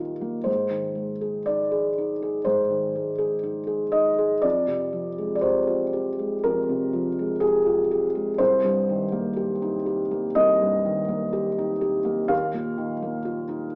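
Neoclassical minimalist piano in C minor, this intimate, melancholic excerpt unfolds at a slow 61 BPM in 4/4 with a rubato feel, a felt-muted upright piano playing alone from 0.0 to 13.8 seconds across a range from C2 to F5. The piano sounds soft, dark and thick with felt, sitting up front in a moderate large studio reverb with a small speaker quality, as it moves through Ab, Fmadd9, Cm7 and Ebsus2 chords.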